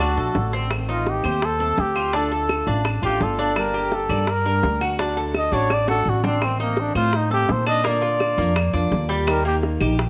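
Latin son and guajira at a brisk 168 BPM in 4/4, danceable and nostalgic, this cut from a longer piece features a breathy, intimate trumpet soloing up front from 0.7 seconds with mellow vibrato and a soft, whispered attack. Underneath, a thumpy, dark upright bass with gut strings sits close to the front, a Cuban tres adds metallic double-string arpeggios, and a fingerpicked nylon-string guitar gives warm classical accompaniment over chords moving through D, Adim, Dm, Gm, Bb and Eb. Tight, high-tuned bongos played with soft hands and distant, woody claves stay in the background, with a drum fill at 5.5 seconds, all under a light reverb.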